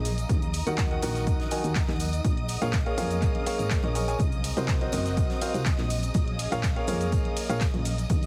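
The clear concert grand piano carries the riff, entering at 0.7 s with a deep, open tone colored by delay and sidechain pumping, in a soulful, energetic stretch of piano house cut from a longer piece. Beneath it, a solid FM bass gives round, fast-attack notes that decay quickly, while a dark symphonic violin section holds lush, bowed chords with expressive vibrato from a distant place in the mix. An airy, breathy pad with a detuned sawtooth edge and a noise layer sits in the background, swirling with chorus and phaser as it sustains through the chord changes from Ebm to Bbm7 and Cm7b5. A punchy, tape-warm electronic kick anchors the groove, joined by a dry analog drum machine playing handclaps, hi-hat, ride and shaker, a very quiet polished jazz kit adding hi-hat and snare, and tambourine and congas echoing from a large, distant room. The whole mix is heavily compressed with a radio-like sound and little reverb, and the bass, strings, pad and piano all breathe with sidechain pumping.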